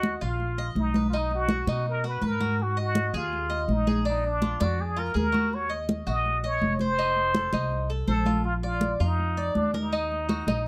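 Congas set a straight 4/4 pulse at 164 BPM in this sultry, danceable Cuban son and guajira passage in Eb minor, their thick, medium-tuned skins sounding close and dry. An upright bass sits up front with a woody, thumpy pizzicato tone on steel strings, carrying the low line from F1 to B2. Above it, a Cuban tres picks bright, metallic arpeggios on double strings, some doubled at the octave, in the same D4 to Eb5 range as the lead. The trumpet with plunger mute plays the melody as a vintage jazz-style solo, its clear wah-wah tone and scooped notes placed up front and bathed in plate reverb. The chords move from Ebsus2 through B, Ab5, Bb7, Ebm, F7 and Bb before returning to Ebm, and this 10.7-second passage, cut from a longer piece, has a dark, warm production with light reverb.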